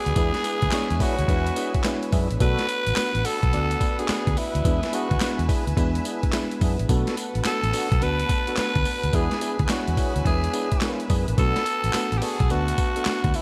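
New jack swing R&B with a bouncy, slick swing, led by a raspy, growling tenor saxophone up front over a gritty, pitched-down sampler-style drum kit with thumpy kick, high-tuned snare, handclaps, hi-hat and tambourine, a dark, round foam-muted electric bass, a glassy, bell-like FM electric piano that adds a fill at 1.6 seconds, lightly overdriven tonewheel organ stabs turning on a slow rotary speaker, and soft, bowed studio strings holding chords in the background, all in a bright 1980s-style digital production with light reverb.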